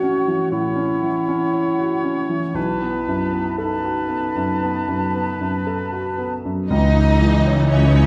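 Bittersweet and full of longing, this rubato cinematic film-score excerpt begins with a mellow, felt-muted upright piano up front beneath a clear oboe, a dark clarinet and an airy small flute group, before lush bowed violins take the melody at 6.7 seconds alongside a second violin line, intense violas, a warm cello section and a smooth double bass section, all set in a wet recital-hall reverb.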